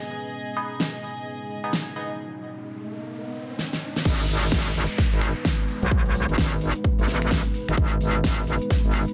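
Bouncy and aggressive, this swung bass house passage at 129 BPM in G# minor opens on a deep, warbling pad and a brief, reedy chamber string section. Nasal band-passed chord stabs with phaser and delay follow, joined by a big-room kit of snaps, crisp hats, crash and huge snare. A riser and downlifter then carry a break and drum fill into the drop at 4.1 seconds, where a punchy electronic kick and a saturated, metallic wobble bass with sidechain pumping hit up front.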